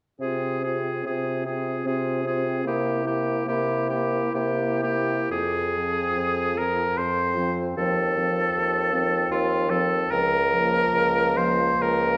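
In a rubato 3/4 that drifts between 59 and 80 BPM, this slow romantic movement for wind quintet in F minor unfolds in a melancholic, solemn mood, cut from a longer piece. Up front, the oboe carries a clear second line with light vibrato, while the French horn, with its own light vibrato, and a warm, soft-attacked clarinet set further back in the background supply the accompaniment. A mellow, close-miked bassoon with vibrato anchors the bass, and the whole ensemble sounds together from 0.2 s, shifting into a new section at 5.3 s within the wet reverb of a church or concert hall.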